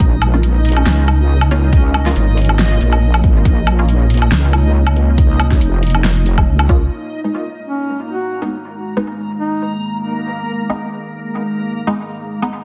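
A heavy, saturated wobble bass sits up front, its detuned sawtooth-and-sine tone wobbling beneath a meditative, brooding stretch of deep dubstep in a half-time feel. Alongside it, a deep electronic kick and a layered deep house kit with a fat snare, metallic filtered hats and woodblock drive the first half, then bass and drums drop away at 6.9 seconds. A dark, full-bodied ambient pad holds sustained chords in the background throughout, with a filter sweep across its second half, while a reversed, dreamy granular texture swells alongside it. Muted, deep chord stabs with a short filter-pluck decay enter early and return at 6.7 seconds through phaser, cassette tape grit and dub echo. A mellow duduk surfaces twice in folk style, its vibrato and scooped notes trailing echoes, in this passage cut from a longer piece under light digital ambience and a dense, heavily limited master.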